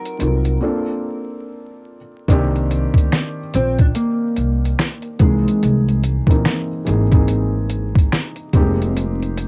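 Nostalgic and cosy, this lo-fi hip hop excerpt settles into a relaxed 72 BPM in 4/4 with a lazy swing on the sixteenths, drifting through jazzy chords such as Ebm6, Bbmaj9, Cm9, C7alt and Fm11. A mellow, clean electric guitar carries the melody for the first 6.0 seconds, its fingered tone coloured by lush chorus, analog delay and cassette tape character. Beneath it, a felt-muted upright piano supplies soft, intimate accompaniment throughout, its thick felt and audible action noise giving the chords a hushed, close feel. The sampler-style drum kit sits up front, pitched down and muffled, with a thumpy kick, fat snare, hi-hat and finger snaps, while a woody, dark upright bass plucks low lines, also placed up front. A light reverb, vinyl crackle and the grain of a home cassette recording wrap the whole scene, with a break from 0.6 to 2.3 seconds before the music moves into its second section.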